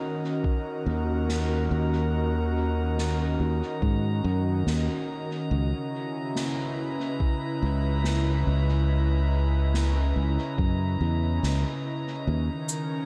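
Deep and spacious, this ambient dub excerpt moves at 71 BPM in 4/4 with a lightly swung sixteenth-note feel in C# dorian. An airy, breathy pad with a detuned, chorused sheen sustains chords from the start, drifting from D#m7 to C#m9 at 5.5 seconds and back to D#m7 near the end. Above it, a faint glassy texture of drifting overtones hangs calmly on a single high note, softened by its own reverb. A muffled, thumpy electronic kick, pitched down and tape-warm, sits up front, joined by a round, saturated fingered bass that enters at 0.9 seconds and stays in a low register. A fat, natural-sounding snare with cabasa sits further back in a hall-like space, its hits trailed by dub echo, while a moderate spring reverb gives the whole mix a lingering depth.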